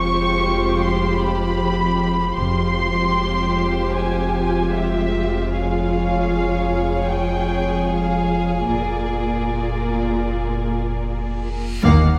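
In free time, this tense, eerie suspense film cue spreads muted, veiled violin sections carrying the melody and a second line over muted viola accompaniment, a muted chamber cello bass and a deep, full sub bass drone, with a close double bass section joining at 2.4 s and again at 8.7 s as the harmony shifts, before a reverse cymbal rises at 11.6 s into a huge, bright impact where a punchy clarinet and a background cello riff strike together at 11.8 s, all within a moderate scoring stage reverb.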